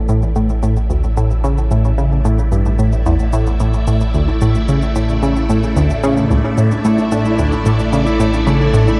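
Ambient, sequencer-driven space music at 111 BPM in a hypnotic, expansive mood, this fragment of a longer piece sets a nasal, detuned sawtooth synth riff up front over a round, deep sine sub bass. Swirling, warbling vintage string-machine chords fade in with phaser and ensemble chorus alongside dry, tape-toned electronic shaker and bongos, while a ringing, fingerpicked concert harp sounds at the start and returns with delayed arpeggios from 6.7 seconds. Everything sits on a held Asus4 chord within a dark, lush hall reverb.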